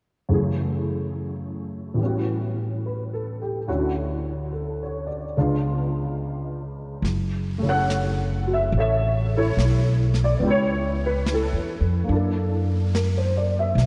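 A gently swung 4/4 pulse at 71 BPM carries this wistful, intimate jazz ballad in F# minor, cut from a longer piece, where an up-front concert grand with deep bass and short sustain, touched by an ensemble chorus, plays the chords alone from 0.3 seconds. At 7.0 seconds a woody pizzicato upright bass on steel strings and an airy, polished brush kit of snare and hi-hat join it, as the harmony moves from F#m9 and Dmaj7 toward an F#7alt. The whole mix sounds dreamy, soaked in lush hall reverb with a cassette-tape haze.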